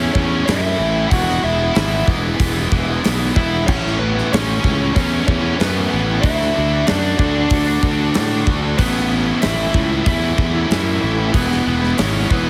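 Heavily compressed, radio-ready sound with light reverb and a small room ambience frames this bittersweet, restless slice of quiet-loud alternative rock, cut from a longer piece. A dark, high-gain lead guitar carries the melody through distortion and digital delay, while three picked rhythm guitars play the riff beneath it: a very quiet, compressed distorted one, a double-tracked heavy high-gain one and a bright, scooped one sitting in the background. A growly, up-front fingered bass with fuzz and overdrive anchors the chords moving from A through E, Aadd9 and Dadd9, and a big acoustic rock kit with a punchy kick, medium-tuned snare and bright cymbals joins at 0.2 seconds.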